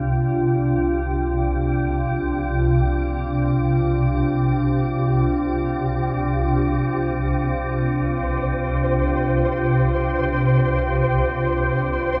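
A swarming, warbling drone sits up front in the low register, its detuned unison voices giving it a tense, vintage, granular edge that keeps it evolving across the whole 12.2 seconds. This is a dark ambient drone cut from a longer piece, moving in free time with a cavernous, unsettling mood and tuned to A4 = 436 Hz. Behind it, a deep, moody pad holds sustained Csus2 voicings in the middle register, its mellow sawtooth tone thickened by chorus and a sub octave and lifted by shimmer reverb. At 8.0 seconds a flickering, grainy texture enters high on a single C, a faint triangle-based shimmer that adds a restless glint to the top. The whole recording is drenched in a huge, wet reverb with a very long tail, so the parts blur into one dark, enveloping space.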